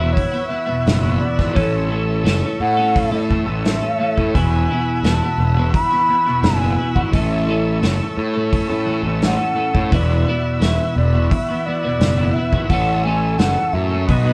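Recorded as a band playing live in one room with moderate reverb, this trippy, hazy psychedelic rock excerpt sets a breathy, mellow concert flute melody with vibrato over buzzy, overdriven combo organ chords, a bright, twangy twelve-string electric guitar riff through phaser, punchy fuzz electric bass and a dark, smooth vintage drum kit, while the harmony swings between Esus2 and A.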